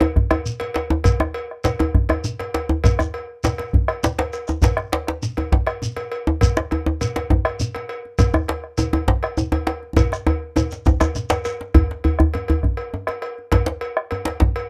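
Earthy and powerful, this excerpt from a West African traditional drum ensemble moves at 135 BPM in a straight 12/8, with a metallic cowbell, a deep, dark bombo sitting close and up front, and two djembes played with soft hands: a deep, dry one in the background and a medium-tuned one up front. A grainy, mellow shekere, compressed and saturated, joins at 0.5 s and stops at 11.5 s, near the end of a drum fill that runs from 10.0 to 11.8 s before the groove returns. The sound is close and detailed with little reverb.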